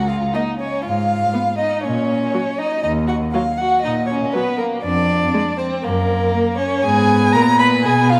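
Cheerful and lively, this short cut from a quick classical-period string quartet movement moves at 120 BPM in 4/4 with a straight feel in F# major. A dark, expressive first violin carries the melody up front with vibrato and portamento, while a warm, even second violin plays a second line that sounds distant, and a close, soft-attacked cello anchors the bass with its own expressive portamento. The viola enters at 0.3 s with smooth, even accompaniment, and the whole quartet sits in a wet concert hall with a long reverb tail.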